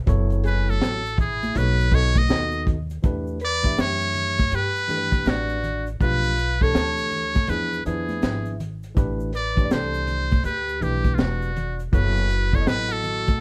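A rough home-demo mix with light reverb gives this cool, smoky jazz-hop cut a loose, lived-in sound, taken from a longer piece in E dorian at 81 BPM with a swung 4/4 groove. A crunchy breakbeat kit brings a saturated, gritty sound with a high-tuned snare, punchy kick, hi-hat and a rolled-off top. Underneath, a woody pizzicato upright bass on steel strings holds the low end, while a clean tine electric piano, heard through its built-in speakers, comps through chords like F#m7, Em9 and E7b9. A muted trumpet carries the melody from 0.5 seconds, buzzy and thin behind its metal mute, with light vibrato and plate reverb placing it up front in a jazz-style solo. In the background, a dark, fingered electric guitar with phaser adds a second line, and a close, dry tube shaker and hard-handed congas fill in the percussion.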